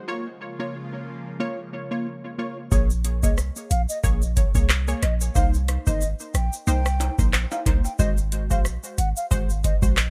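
Dry and echo-heavy, this dancehall fragment, cut from a longer piece, feels hypnotic and sultry, with a swung sixteenth-note lilt. It opens on a lush, thick unison pad of detuned sawtooth and square waves, slow to bloom and bright, with chorus, phaser and sidechain pumping. Alongside it, a punchy chord stab with a filtered, plucky attack, sweetened by chorus and analog delay, plays through the whole clip over Db6, then Bbm7, Cm7 and Ab7. At 2.7 seconds the pad drops out and the groove arrives: a booming analog drum machine up front with a deep kick, metallic hats, handclaps, rim click and shaker, plus a boomy 808-style sine bass with a noise layer and a fast, decaying attack. A mellow, hollow wooden flute carries the melody, pure and distant with vibrato and tongued notes trailing analog delay. Vintage, band-limited egg shaker and timbales add faint acoustic texture, echoing through delay until the end at 10.1 seconds.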